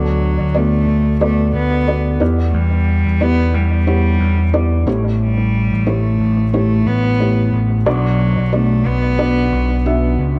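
Pop in a hopeful, warm mood, this short passage is cut from a longer piece and rides a lightly swung sixteenth-note feel. A bowed cello carries the melody in a narrow low register, its one player producing a rich, reedy gut-string tone in a period style that sits up front. Beneath it, a felt-muted upright piano plays accompaniment with a soft, mellow, intimate character, short sustain, thick felt and audible action noise. Both the cello and piano are treated with analog delay, while an overdriven picked electric bass supplies a dark, round, punchy low end that stands out as the loudest part. The harmony moves from D6 to Em7 at 2.2 seconds, then to A7 and finally Bm at 7.9 seconds. All three parts play together from the start, and the echo-heavy mix sits in a light studio reverb.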